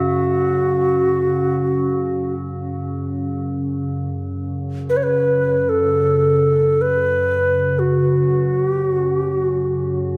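Spacious and meditative, this free-time world meditation music in F# minor pentatonic is an excerpt cut from a longer piece. A close-miked Native American-style cedar flute carries the melody up front with an airy, woody straight tone and audible chiff on its tongued notes, trailed by a diffuse ambient delay, while a glassy FM pad holds a low, ethereal drone with slow attack, ensemble chorus and long release. A brilliant bronze singing bowl, struck with a wooden striker, rings with slow metallic beating until 8.4 seconds, and a moderate plate reverb soaks the whole mix in a dreamy haze.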